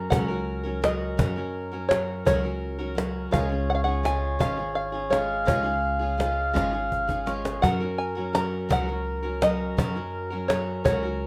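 A plunky, fingerpicked open-back banjo carries the melody from the very start, joined at once by a reedy accordion on a second line, a picked steel-string acoustic guitar and a pizzicato upright bass, with the cajon entering at 0.1 seconds. This short excerpt of acoustic folk, played by a duo or small band, moves at a slow 56 beats per minute in a straight 6/8, in F# major tuned to A4 = 437 Hz. The mood is nostalgic and peaceful. The banjo sits in front with a twangy, percussive bite, while the accordion's boxy, dry-tuned tone fills the space beneath it and the guitar offers warm accompaniment. The bass is dark and thumpy with gut strings, and the cajon adds a woody pulse with faint snares, playing a fill from 6.9 to 7.6 seconds. The harmony moves from F# to C# at 3.3 seconds and back to F# at 7.6 seconds, all set in light reverb.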